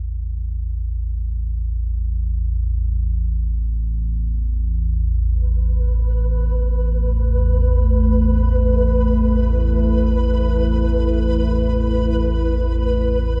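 Drenched in a cavernous, cathedral-like reverb with a long tail, this unsettling fragment of a longer dark ambient drone piece unfolds in free time. A deep, ominous drone rumbles up front from the start, its detuned tone warbling with a vintage character, while a flickering, grainy granular texture seeps in at 5.8 seconds. At 7.0 seconds a moody pad of sustained chords with chorus joins, its unison sawtooth layers thickened by a sub octave.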